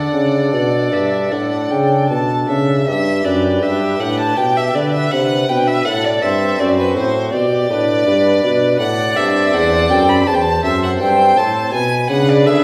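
Flexible rubato phrasing in common time gives this baroque-style sonata movement with continuo a dance-like, radiant lilt, heard as a section cut from a longer piece. Two bowed violins share the top of the texture. The melody violin is smooth and even with vibrato, set distant in the mix. The second violin plays a higher line, focused and placed up front, so it sounds louder than the melody. A pipe organ on a nasal cornet solo stop, voiced in a romantic manner with tremulant, supplies the accompaniment, while a dark bassoon with light vibrato and a smooth top carries the bass. All four parts play throughout, moving from D to G at 2.9 seconds and through diminished and minor colours, all in a stone room whose reverb places the listener further back.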